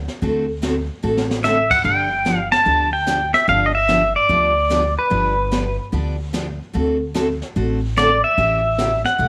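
A clean, up-front pedal steel guitar carries the melody from 1.4 seconds, its fingerpicked slide lines compressed and shaped with volume swells and a slapback echo. This cheerful, swinging western swing excerpt moves at 147 BPM in 4/4 with swung eighth notes, moving through D7, G7 and A7 chords. Underneath, a bright, full-bodied steel-string acoustic guitar with fresh strings is picked as accompaniment. A woody, thumpy upright bass with gut strings anchors the low end with pizzicato notes. The brush drum kit sits distant and roomy, with dark cymbals, a high-tuned snare, a boomy kick and a rolled-off top, and it plays a short fill just before the steel enters. Light reverb gives the whole a small-room ambience.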